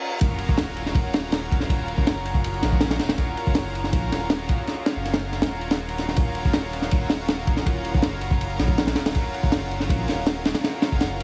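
A crunchy, up-front breakbeat kit with a punchy kick, high-tuned snare and ride cymbal drives this dark, frenetic drum and bass and jungle excerpt at 161 BPM in Eb minor, arriving at 0.2 s alongside a thick, tube-saturated sub bass. Beneath them, a lush unison pad of detuned sawtooth and square waves holds a sustained Ebm9 chord with chorus and a gritty 12-bit sampler edge, while a reverse cymbal and sub drop sit in the background of the first 1.7 s. The mix is heavily compressed with a radio-like character and light studio reverb.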